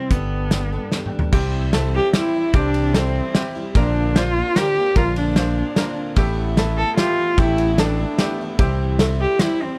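In a straight three-four lilt, this hopeful, anthemic indie folk excerpt sets a loose drum kit in a small, pumping room, its tight kick and medium-tuned snare up front beside a fingered electric bass. A bowed cello carries the melody with focused vibrato and a smooth top, over a background of a shimmering, octave-doubled twelve-string guitar and a full-bodied fingerpicked steel-string that drops out at 1.3 seconds after a drum fill. From that point the arrangement builds as a brilliant, woody upright piano and mellow ukulele arpeggios join over chords moving from Gadd9 through C, Bbadd9 and Asus2 back to C, all set in studio reverb.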